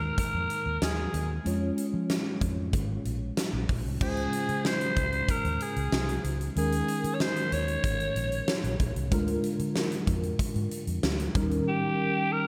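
A raspy, gritty alto saxophone carries the melody up front in this nostalgic, dramatic slice of 1980s-style pop, its bright vibrato tone touched with delay and sitting between G4 and Db5. Beneath it, a mellow tine electric piano fills out the harmony through an ensemble chorus, moving from Ebsus4 and Db/F into Dbmaj7, Eb7sus4, Bb7/D and finally Eb7. A vintage muted fingered electric bass adds a dark, round, foam-muted low end, dropping out at 11.6 seconds. The huge arena drum kit enters at 0.2 seconds at a steady 94 BPM in 4/4, with a fat snare and punchy kick wrapped in gated reverb and crowned by bright cymbals. A lush hall reverb and bright digital production give this short cut from a longer piece its unmistakable period sheen.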